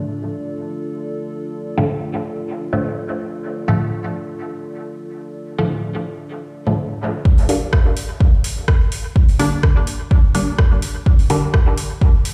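A dark, detuned analog pad opens this hypnotic, hazy dub techno excerpt with chorused, sidechain-pumped sustained chords until 7.2 seconds, joined at 1.8 seconds by a muted, sawtooth-edged filtered dub chord stab steeped in phaser and dub echo, before an overdriven, up-front electronic kick arrives at 7.3 seconds, followed at 7.4 seconds by a lightly swung deep house kit of metallic hats and rim click, the recording heard through a large studio reverb as if played on a big sound system in a bare room.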